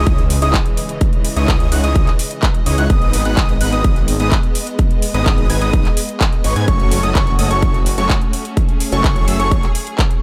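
A huge, bright supersaw lead carries the riff in this triumphant, euphoric festival progressive house piece at 127 BPM, joined by a nasal unison lead playing high arpeggios through lush chorus and tape echo, both leads pumping with the sidechain. A punchy, up-front electronic kick and a tape-warm pop kit of handclaps and metallic hi-hats drive the straight 4/4 groove. Beneath them, a thick detuned saw bass and smooth symphonic strings in the background also pump as the chords move from C#madd9 to G#m and F#m; a very quiet sub drop marks the opening impact in a dry mix cut from a longer track.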